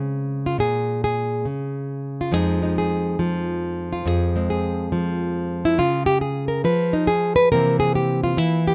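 A fingerpicked nylon-string guitar plays alone and up front, its full-bodied, deep classical tone carrying audible finger squeak through this short, moody, late-night solo jazz excerpt with a swung feel. The chords move from Bbm9 to Fm7, then to Db and finally C7 at 7.5 seconds. Close, detailed microphones and light reverb keep the sound intimate.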